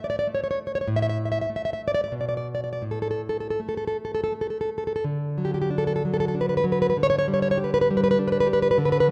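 A lone nylon-string guitar opens this brief excerpt of a tender romantic piece, its first bars unfolding before any chord is sounded. The classical instrument is fingerpicked with a dark tone and sits up front, reaching from A2 up to E5. Set in a three-beat metre, the playing moves with a free, rubato feel that stretches and relaxes the pulse. Around 5.0 seconds a new passage begins, settling onto a D chord and then a G5 over D at 6.9 seconds. Small finger squeaks on the strings add a close, human detail. A moderate recital-hall reverb surrounds the guitar, giving the warm, gentle mood a sense of space.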